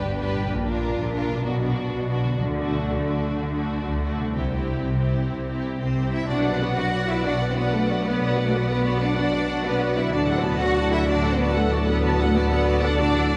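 Cinematic orchestral music at 125 BPM in a straight 12/8, heroic and soaring, cut from a longer piece and heard in a church-like space with a long, wet reverb. The strings play throughout: a soft-attacked, expressive violin section carries the melody over a focused second violin line and an intense viola accompaniment, all bowed with vibrato and a lush ensemble sheen. Beneath them a smooth, distant cello section and a bright, up-front double bass section share the bass, while a ringing, fingerpicked concert harp plays arpeggios in the background. The opening 6.3 seconds form a build-up through a shifting G, Bb, B minor, D and C progression, marked by a brief, very quiet, close and dry timpani entry from 2.4 to 2.9 seconds. At 6.3 seconds a dark, very quiet French horn section and a close-miked trombone section with light vibrato enter together on sustained chords, thickening the harmony as it settles on B minor and then D.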